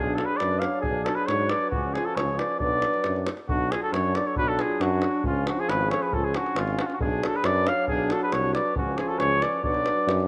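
Set in a straight 2/4 at 136 BPM, this short cut from a longer Balkan brass band piece in B dorian with a raised fourth moves with virtuosic yet bittersweet character, the davul entering at 0.2 seconds with a deep, band-limited, vintage thump. The trumpet carries the melody up front with a warm, vintage, classical-style tone, while the clarinet traces a second line in the background. Beneath them the French horn, clear and distant with light vibrato, and the very quiet euphonium, roomy and softly vibrating, hold the accompaniment, and the tuba anchors the bass. Harmony sways between Bm and C#, and the opening phrase repeats after 3.5 seconds. A moderate, lush hall reverb surrounds the group, though the mix keeps the rough feel of a home demo.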